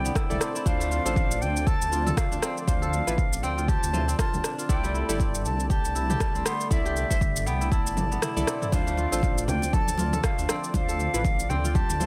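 Earthy and warm, this afro house excerpt moves at 119 BPM in 4/4 with a swung sixteenth-note feel, sitting in D dorian as the harmony shifts between C69 and Dm9. A pure, straight-toned concert flute carries the melody high above, its crisp attack trailed by digital delay, while a bright, fingerpicked kora ringing with delay spins arpeggios in the middle register. Beneath them, a smooth, detuned analog pad holds sustained chords in the background with chorus and sidechain pumping, joined by soft, mellow chord stabs that evolve through a filter sweep and decay into chorus and delay. A dark, rumbling detuned saw bass anchors the low end, breathing with the same sidechain pumping as the pad, kora and stabs. An up-front electronic kick drives the groove alongside an overdriven, layered deep house kit of rim click, shaker and toms, which plays a drum fill from 8.0 to 8.7 seconds as the kick drops out from 8.2 seconds, before ringing acoustic congas enter in the background at 8.7 seconds within a digital ambience.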